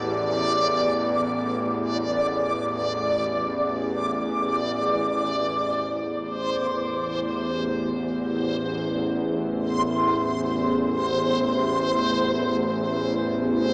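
Dark ambient drone, unsettling and dark, cut from a longer piece. A tense, string-like bowed drone sits up front in the low register, its sawtooth body carrying a noise layer and vibrato, with a slow attack and a long release. Equally forward above it is a reversed, swelling texture: a bright, dreamy, detuned shimmer with a granular grain and a soft attack. At 9.1 s a very quiet, deep pad enters between them with moody, mellow sustained chords, and its sub octave and chorus add a faint, warm glow. The harmony shifts once at 5.3 s, and the piece sits in a cavernous cathedral reverb that makes the space feel vast and echoing, though the sound has a small-speaker quality.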